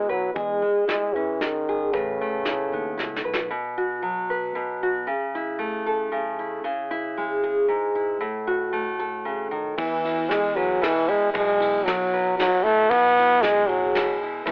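Acoustic folk in a gentle, hopeful 3/4 at 115 BPM, this cut from a longer piece sets a dark, full-bodied fingerpicked nylon-string guitar up front with a present, lightly vibratoed classical-style French horn second line, while a fingered electric bass and a soft brush kit with a punchy kick and a short fill at 3.0 seconds fall away so the guitar carries the chords from B5 through A/C# and C#m alone from 3.5 seconds until everyone returns at 9.8 seconds, all wrapped in light reverb and the hazy telephone-like sound of a home cassette recording.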